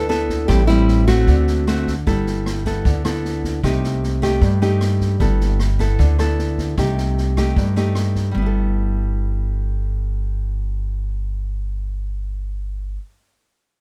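Sunny and romantic, this bossa nova excerpt moves at 153 BPM in a straight 4/4 feel in G major, cut from a longer piece. A fingerpicked nylon-string guitar carries a brief melody that ends at 1.8 seconds, its fresh strings giving it a small, warm presence. A second nylon-string guitar, classical in tone and placed up front, fingerpicks the accompaniment for the full 13.1 seconds. Beneath them, a woody pizzicato upright bass with steel strings sits up front, while a natural-sounding drum kit with a punchy kick, rim click and medium-tuned snare plays until 8.2 seconds. The harmony moves from Am7 and D7 into alternating G69 and Cm6 chords. Close, detailed microphones and little reverb keep the sound intimate.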